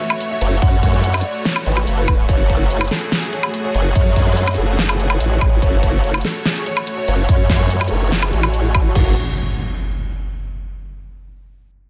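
Heavy wobble dubstep in F# minor at 144 BPM with a half-time feel, this chaotic, heavy excerpt rests on a single F#madd9 chord, with a dark, mellow concert grand piano carrying the melody in the background through digital delay while a lush, detuned supersaw pad holds sustained chords under sidechain pumping. A big-room kit with a huge snare, crash, hi-hat and woodblock plays in a small room from the start, and a formant-swept wobble bass, detuned and overdriven with chorus, sits up front from 0.4 seconds, joined at 0.6 seconds by a punchy, layered electronic kick. At 9.0 seconds the groove gives way to an electronic impact, all within a dense, heavily limited modern master.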